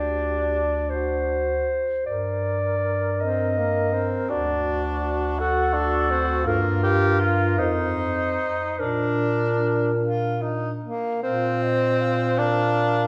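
This classical excerpt for a quartet of single reeds is melancholic and yearning, moving in a lilting compound metre with a freely rubato feel. The mellow clarinet carries the melody, its tone smooth at the top. Beneath it, a bright alto saxophone with light vibrato traces a second line that sits a little further back in the balance. A clear tenor saxophone, also lightly vibrato and somewhat roomy, supplies the accompaniment, while a smooth-topped bass clarinet anchors the bass close up. All four play together from the start until 13.1 seconds, with the harmony shifting from darker minor colours toward a settled major chord before a new passage begins at 11.2 seconds, all in the lingering reverberation of a recital hall.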